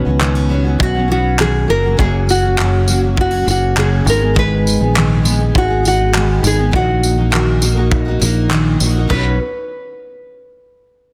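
A straight 4/4 groove at 101 BPM carries this easy-going, heartfelt acoustic pop excerpt in B major, with a loose indie drum kit entering at 0.2 s with punchy soft-clipped kick, handclaps, tambourine, dark crash cymbal and a rolled-off top, under a round, up-front fingered electric bass. A small, up-front nylon-string guitar carries the melody with audible finger squeak over a double-tracked, full-bodied jumbo steel-string picked accompaniment and a shadowy fingerpicked steel-string playing arpeggios in the background, moving through Badd9, F#, G#m and D#m/A# before returning to Badd9 at 9.1 s. Light reverb and studio ambience surround a dense, heavily limited modern master.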